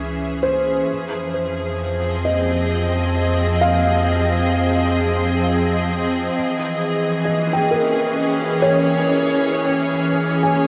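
A morphing wavetable pad fades in over the opening 6.3 seconds, holding sustained chords with a slow attack, bright sine-like tone and ensemble chorus, set up front and washed in its own reverb and shimmer. Alongside it, a felt-muted upright piano plays soft arpeggios with a dark, intimate tone, its thick felt and audible action noise giving it a vintage feel, with delay and shimmer trailing each note. A deep, round sub bass sustains underneath until 6.3 seconds, when the music moves into a second section carried by pad and piano alone through 10.7 seconds. The harmony drifts from D-flat minor to F minor seventh and back again in an unhurried three-beat metre. A huge, long-tailed reverb and the warble of worn cassette tape, with its drifting pitch, make this spacious, reflective ambient passage, cut from a longer piece, feel hazy and remembered.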